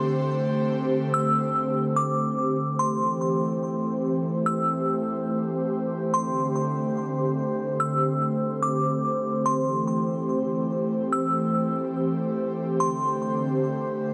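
An airy, breathy pad opens this fragment of an ethereal hip hop piece, holding soft, mellow sustained chords up front with a slow attack and a gentle chorus shimmer. At 1.1 seconds a glassy FM synth bell enters high above it, tracing a small, crystalline melody whose bright, warbling tones ring out and decay through chorus and digital delay. The harmony drifts unhurriedly between D7sus4 and Am7, the changes arriving at uneven intervals in free time. A huge ambient reverb with a long six-second tail surrounds both parts and gives the whole piece a spacious, floating feel. The production is dark and warm, and the bell falls away at 13.2 seconds while the pad's long release carries on to the end.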